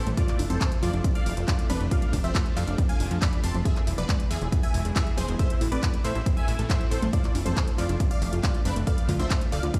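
Soaring and euphoric, this short uplifting trance passage moves in a straight four-four pulse, cut from a longer piece and built over a chord cycle of F6, E, Am, F6 and Dm. A heavy, layered electronic kick sits up front, joined by a techno drum kit of handclaps, hi-hat and toms, both re-recorded in a large room. A punchy, funky analog bass with a plucky filter and a ring-modulated edge drives the low end from D1 to A2, pumping with the sidechain. Above it, a detuned supersaw stab carries the melody between D4 and C6, its sustained sawtooth body given a sub octave, a moving notch and a digital delay. In the background, a lush, full-bodied unison pluck spins arpeggios with a noise layer and tape echo, also breathing with the sidechain pump. The mix itself stays fairly dry, though it sounds as if played through a big sound system in a bare stone room.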